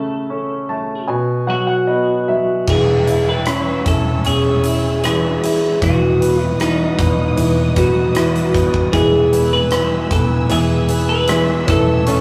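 A twelve-string electric guitar carries a twangy, bright melody over a brilliant, up-front concert grand piano that opens with a fill in this hopeful, tender 76 BPM pop ballad excerpt, before a huge arena drum kit with a punchy kick and bright cymbals, a dark, round, foam-muted fingered bass and lush, bowed strings in the background enter at 2.7 seconds, with a clean, direct-recorded electric guitar adding picked arpeggios from 8.9 seconds, all in a rough rehearsal-room sound with modest small-room reverb.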